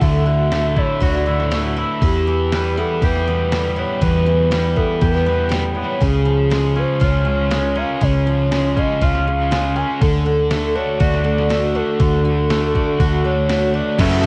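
A hazy, blissful shoegaze and dream pop piece at 120 BPM opens with a breathy, warbling sine lead carrying the melody over shimmering twelve-string acoustic arpeggios, a dark fuzz guitar riff steeped in lush chorus, a twangy clean electric riff washed in reverse reverb, a round, foam-muted bass and a thumpy, detuned 8-bit drum machine, moving through Dadd9, Em, C# and D with tape echo and cassette grit on several parts and a faint mains hum from the home cassette recording, before a swirling phased string machine and a biting, double-tracked overdriven guitar slip in at 14.0 s just ahead of the cut at 14.3 s.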